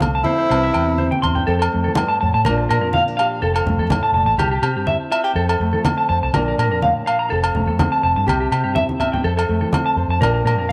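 Swung sixteenths at 124 BPM in 4/4 drive this carefree, danceable highlife guitar band excerpt in F major, where ringing agogo bells and bright, low-tuned congas played with soft hands sit over a dark, round, punchy foam-muted electric bass up front, a small fingerpicked nylon-string guitar with audible finger squeak comps, a twangy, scooped clean electric guitar spins arpeggios through lush chorus and tape echo, and a mellow tenor saxophone with vibrato and a smooth top voices a brief jazz-style phrase from 0.2 to 1.2 seconds, all in a light small-room ambience.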